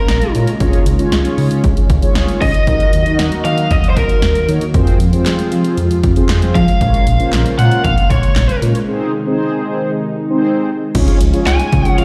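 Synth-pop with a wistful, nostalgic air, where an overdriven, lo-fi lead guitar with tape echo carries the melody over a swirling phased analog pad, a glossy chorused synth bass, a punchy, up-front house drum kit with handclaps and crash, and dark, detuned synth brass, before a very quiet round pluck adds arpeggios from 10.9 seconds, all set in a large studio reverb as if played on a big sound system in a bare room.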